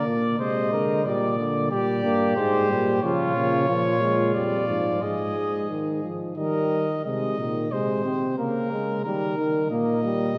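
Wet church reverb with a 2.7-second decay surrounds this serious, solemn classical canzona for brass ensemble, cut from a longer piece and moving at 91 BPM in 3/4 in Ab major. A present, up-front trumpet carries the melody while a soft-attacked, distant flugelhorn adds a second line until 7.0 s, above a mellow, close-miked trombone with light vibrato and a warm, up-front bass trombone holding the bass. The harmony passes through colours such as Abmaj9 and a diminished chord before a new passage at 7.1 s settles on Ab and then moves to Eb.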